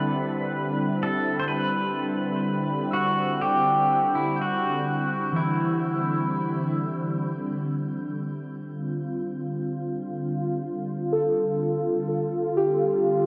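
Steeped in a cathedral-sized reverb and a cassette haze, this weightless, peaceful ambient excerpt drifts at 62 BPM as a clean, fingerpicked pedal steel guitar sings an up-front slide melody through delay until 6.8 s, over a smooth, detuned analog pad holding chorused chords and muted, dark felt-like synth keys tracing arpeggios with chorus and delay, the harmony moving from Cmaj7 to F69/D at 7.3 s.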